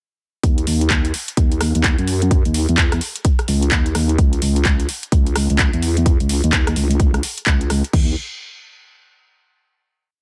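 A nasal, vowel-sweep wobble bass drives this short, aggressive bass house piece, arriving at 0.4 seconds with dark, saturated phrases whose formant-filtered wobble shifts speed as it goes. Sitting up front with a resonant, sine-based core, the bass carries chorus, overdrive and a sidechain pumping that ties it to the beat. Beneath it, a punchy electronic kick holds a steady four-on-the-floor pulse, joined by a house kit of metallic closed and open hats, rim clicks, handclaps on the backbeat and crash cymbals, all riding a swung sixteenth-note feel. The whole track is essentially one swaggering drop from 0.4 to 7.9 seconds, after which a final note rings out to the end. A digital ambience wraps the mix, keeping the layered, tightly produced sound brash and forward.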